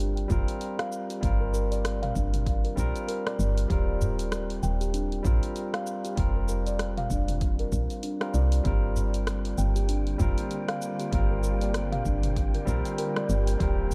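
Organic downtempo at 97 BPM in 4/4, with a light 16th-note swing and an earthy, hypnotic mood, this short excerpt moves from Fsus4 to Eb and back. A woody, round FM bass sits up front beneath a barky electric piano heard through a combo amp, its chords pumping with sidechain and trailed by tape echo. A steel tongue drum struck with soft rubber mallets rings out pure, meditative arpeggios, vintage and band-limited, also carried on tape echo. The groove comes from a layered, produced deep house kit of hi-hat, rim click, shaker and toms, a punchy electronic kick set in the background, and a small, close and dry udu kept very quiet. At 9.5 seconds an ethereal pad of detuned sawtooth and triangle voices enters with ensemble chorus and pumping, joined by a dark, breathy wind-like noise texture held on a single high note. The production is dark and warm with a light digital ambience.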